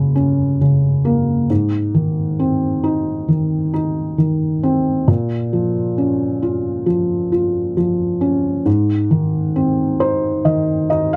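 Emotional and heartfelt, this short pop fragment cut from a longer piece features a solo felt-muted upright piano, its thick felt giving a soft, dark, intimate tone that sits up front in a dry, close 1970s-style studio sound. The chords move from Gb to Ab, then Bbm and back to Ab, with the piano spanning from Gb2 up to F5. A brief piano fill closes the passage from 9.6 to 11.2 seconds.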